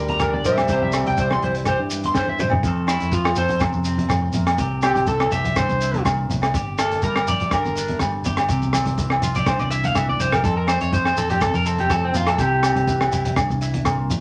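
Bathed in moderate studio reverb, this sunny highlife guitar band excerpt opens with a boxy, fingerpicked acoustic guitar melody over a smooth-topped trombone with vibrato, both stopping at 2.1 s, while a compressed semi-hollow electric guitar comps, a round fingered bass anchors the low end, a twangy, slightly broken-up electric guitar plays up-front arpeggios, and a gritty breakbeat kit with a high-tuned snare drives alongside low-tuned congas, ringing agogo bells and a grainy shekere, as a drum fill leads into a clean electric guitar solo from 2.6 s.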